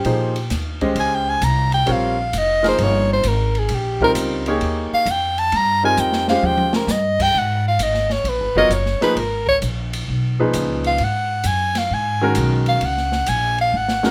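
Swinging in 4/4 at 132 BPM, this spiritual, searching modal jazz excerpt puts a close-miked soprano saxophone solo up front over short-sustained baby grand piano chords, a woody, thumpy pizzicato upright bass and an acoustic drum kit with dark cymbals and a boomy kick that adds fills at 6.0 and 13.7 seconds, set in a moderate studio reverb as the harmony settles into G# dorian at 7.3 seconds.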